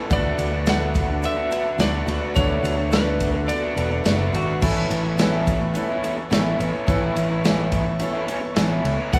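A punchy, up-front natural country drum kit drives this hopeful folk rock and heartland rock excerpt at 106 BPM in 4/4 and A major, its medium-tuned snare, kick, ride and crash set in an airy, polished room alongside a round fingered electric bass. A warm, slightly broken-up electric slide guitar carries the melody, played with fingerpicks, from 0.1 to 4.3 seconds before a clean, twangy pedal steel guitar takes a brief, very quiet second line with volume swells from 4.4 to 5.5 seconds. Underneath, a lo-fi, double-tracked garage guitar with overdrive plays a riff, while a boxy, picked swing-style acoustic guitar sits in the background. A tonewheel organ holds sustained chords through a slow rotary speaker, and a brilliant baby grand piano and a grainy egg shaker add very quiet detail. The harmony moves from D6 to Aadd9, and a moderate cathedral reverb gives the short passage a spacious, church-like glow.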